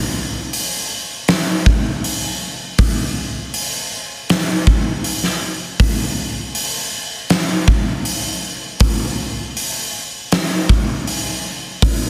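A big acoustic rock drum kit comes in at 0.5 s and carries this short, angsty, cathartic passage cut from a longer piece, with hi-hat, a punchy kick and a fat snare playing a straight 4/4 feel. The kit sits up front in a bright stone room with light reverb. A dense, heavily limited modern master gives the sound its weight.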